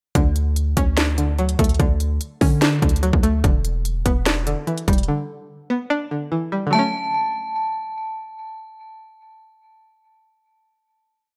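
This short hip hop and trap piece runs at 146 BPM in a half-time 4/4 feel in D major, with a triumphant yet wistful mood that moves from Dmaj7 to Em7 and back to Dmaj7. A twangy, full-bodied, string-like resonator pluck with chorus and a filter sweep carries the accompaniment, a rising arpeggio in eighths repeated like a sampled loop that runs until 9.9 seconds. Beneath it, a deep, boomy 808-style bass plays long sub-bass notes that follow the kick, while an electronic trap drum kit with a hard-clipped kick, sharp snare and crisp hats drives the half-time beat with fast hi-hat rolls. Bass and drums drop out at 5.1 seconds, and at 6.7 seconds the final chord arrives with a metallic, inharmonic FM bell ringing a looping melody on a high A, bathed in chorus and delay. The sound is produced and up front in a light reverb.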